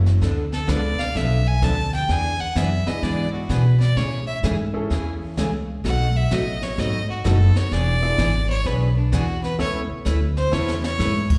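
A clear, biting fiddle carries the melody across this short western swing excerpt, its bowed line airy and intense with light vibrato, set close and ringing with plate reverb and slapback echo. Underneath, a woody, thumpy upright bass sits up front, plucked with a dark tone, while a brushed drum kit with dark cymbals, a high-tuned snare and a punchy kick keeps a lively swung 4/4 and adds a fill from 10.5 to 11.0 seconds. A full-bodied, picked dreadnought acoustic guitar and a bright, brilliant upright piano fill in the accompaniment, both touched with the same plate reverb and slapback echo, the piano lying further back in the mix. The harmony moves through Dm6, E7, Amaj7 and B7 before settling on Aadd9, giving the playful, swinging mood a jazzy colour. The whole performance comes across as a live gig heard through a venue's sound system, with a light recital hall reverb around it.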